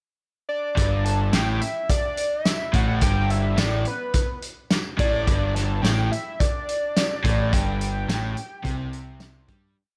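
Indie rock with a wistful, carefree mood, this short piece opens with a hollow, woody square-wave lead that enters at 0.5 s in a brief pickup bar, carrying a motif-based melody of song-like phrases. Its detuned, mellow tone, with a sub octave, vibrato, chorus and slapback echo, sits up front. At 0.8 s the verse begins on a single G5 chord, with a double-tracked, compressed overdriven electric guitar playing a dark single-note riff that a round, punchy fuzz bass doubles as a driving eighth-note line. A loose acoustic drum kit with a punchy kick, medium-tuned snare, hi-hat and tambourine lays down a 60s soul groove, its gritty, saturated sound having a rolled-off top. The production is dark and warm with light studio reverb, and the whole piece fades out from 7.5 s to its close.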